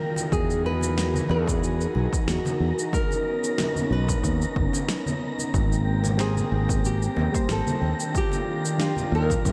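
A lightly swung 92 BPM groove in 4/4 sets this smooth sunset chillout piece in motion, with a fat, tape-warm electronic snare and shaker and distant, very quiet congas entering at 0.2 s, followed at 0.3 s by a punchy, overdriven electronic kick and an up-front, growly fretless bass. Over lush major-ninth chords, a full-bodied fingerpicked nylon-string guitar carries the melody through analog delay, with audible finger squeak, while an airy, detuned pad with chorus sustains the harmony and a breathy, wind-like tuned noise texture drifts high above. Soft, warbling electric-piano-like synth keys slip in at 6.2 s in the background, and the whole dreamy mix is soaked in a long cathedral reverb.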